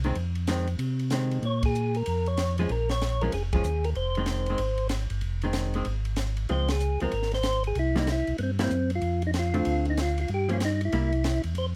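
A percussive tonewheel organ with third harmonic percussion and a slow rotary speaker carries the melody from 1.5 seconds in this soulful, bluesy soul jazz organ trio excerpt in F minor at 190 BPM with a swung feel, over a round, mellow organ bass with chorus vibrato, a dark, compressed hollow-body jazz guitar comping, and a dry cocktail drum kit with a high-tuned snare and punchy kick, with the band hitting accents at 1.6, 3.5, 6.7 and 8.6 seconds in light reverb.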